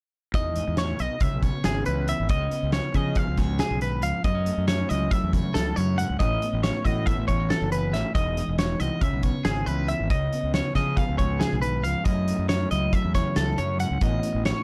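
From 0.3 seconds a dark, fingered clean electric guitar, a bright, twangy twelve-string electric guitar picking compressed arpeggios up front, a growly fuzz bass with overdrive, and a loose indie drum kit with a fat snare and punchy kick in a pumping studio room all play together in this bright, playful math rock and midwest emo piece at 276 BPM in 9/8. The harmony cycles twice through Emaj7, C#m7, C#7, F#m7 and A69, with the second pass starting at 8.2 seconds. Light reverb sits over a dark production, and the drums have a rolled-off top.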